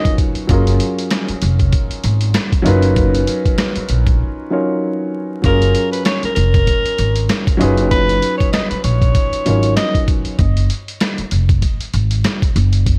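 A mellow, close-miked tenor saxophone with light vibrato carries the melody from 5.5 seconds over a dark, intimate concert grand piano with audible action noise, a muffled, thumpy sampler-style drum kit and a woody pizzicato upright bass in this soulful, nostalgic boom-bap hip-hop excerpt at 97 BPM in F# major, drifting between F#maj9 and C#13/F# with gritty vinyl crackle, a break at 4.2 seconds and a closing F#sus2.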